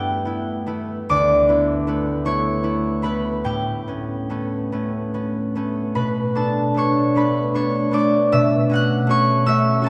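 In 6/8 with uneven, rubato beats at about 50 BPM counted in dotted quarters, this wistful, gentle classical fragment, cut from a longer piece, features a solo concert harp that sounds bright, ringing and up front, fingerpicked across a span from D2 to F#6 through chords moving from G6/9 and D6/9 to A9, Bm7 and F#m7/B, all bathed in a wet church reverb with a 2.7-second decay.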